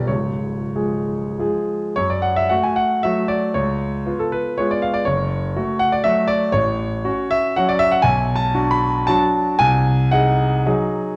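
Nostalgic and wistful, this romantic classical excerpt is a triple-time dance in F# minor for solo concert grand piano, played with dotted rhythms and free rubato between 89 and 131 BPM, the clear, natural, up-front piano with deep bass reaching from B0 to B5 as the harmony settles on F# minor at 2.0 seconds and moves through C#7, Bm7 and G#7/B#, all set in a reverberant recital hall and colored by the worn, warbling pitch drift of old cassette tape.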